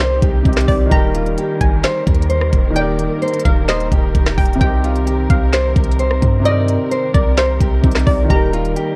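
A half-time trap groove anchors this short piece cut from a longer track, with an electronic kit of knocking kick, woody snare, crisp hi-hats, rim clicks and handclaps sitting up front, and a deep, boomy 808-style bass with a sine body and a noise layer. Over it, a bright, fingerpicked nylon-string guitar carries the classical-flavoured melody with fresh strings and a digital delay. A hollow, bouncy square-wave pluck with detuning, ring modulation and a filter sweep adds a higher second line, thickened by chorus and delay. A soft, intimate felt-muted upright piano supplies accompaniment with audible action noise, while a distant, veiled string section plays sustained, lush bowed chords con sordino with vibrato. The harmony moves between C minor and E-flat, giving a mood that is triumphant yet wistful. The whole recording is coloured by a worn cassette-tape character with warbly pitch drift, and the drums drop out at 8.9 seconds, just before the end.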